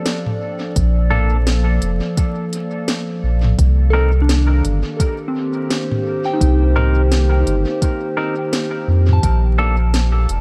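Wrapped in vinyl crackle and a light digital ambience, this hazy, meditative ambient dub excerpt drifts on a warbling, detuned tape-like pad and a soft FM synth bell playing arpeggios through chorus and dub echo, while an organic electronic kit with a woody snare and crisp hats, a soft electronic kick and a round, up-front sub bass arriving at 0.8 seconds set a swung groove, and a twangy clean electric guitar adds echoed stabs with 12-bit sampler grit over chords moving from Bbmaj7 to Cm7 and back.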